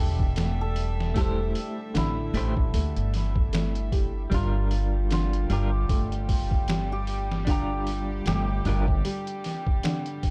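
Trip hop at 76 BPM in G dorian, brooding and smoky, built on an up-front, pitched-down sampler-style kit with a thumpy kick and overdriven grit, over a growly pizzicato upright bass that drops out at 9.0 s. A shimmering hammered dulcimer carries the melody through tape echo while a felt-muted upright piano lays mellow arpeggios with 12-bit sampler grit and digital delay, and a distant, reedy violin section holds sustained chords in the background. A clean hollow-body electric guitar adds tremolo-washed accompaniment from 1.1 s, all moving from Am7 to Gm7 in this short excerpt from a longer piece.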